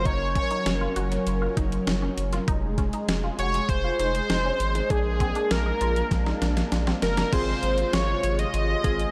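Driving and cool, this synth-pop excerpt moves at 99 BPM in a straight 4/4, with a thick, detuned unison lead carrying the melody up front through dub echo over a swirling phased pad, a round, deep analog bass and a squelchy resonant blip pluck tracing arpeggios in the background. A clean 12-bit drum machine with a thumpy kick and overdriven crunch punches through a drum fill from 6.1 to 7.3 s, after which chorused analog keys join for the closing stretch. The mix is echo-heavy with a moderate spring reverb, moving through Gb, Fm and Bb before landing on Ab6.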